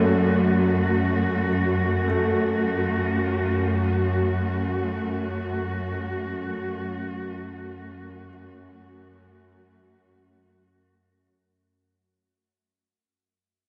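From the first moment, a dark, bowed cello section sustains a D/F# chord up front over a tense, detuned sawtooth drone on F#2 that carries its own reverb, while a very quiet, clear baby grand piano traces intimate arpeggios with audible action noise, all of it forming an unsettling free-time dark ambient fragment set in a vast, echoing cathedral space that fades out from 0.2 s until it ends at 11.2 s.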